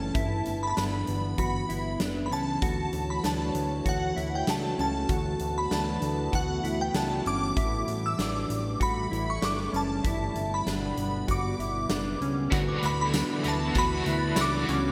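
Dream pop at 97 BPM in D major, ethereal and floating, with a shimmering FM bell carrying the melody up front through ensemble chorus and digital delay over a warbling, nostalgic tape-like pad, clean fingered arpeggios from a dark electric guitar, and a fat, saturated analog bass, all alongside a huge arena drum kit of punchy kick, snare, hi-hat and tambourine treated with gated reverb. The chords move from G to Dmaj7, A7sus4 and back to G before settling on D69 at 12.5 seconds, where a bright, crunchy overdriven guitar with tremolo enters, joined at 12.7 seconds by a very quiet, sparkling glockenspiel. The bright 1980s-style digital production sits in a moderate, lush hall reverb, and this excerpt is cut from a longer piece.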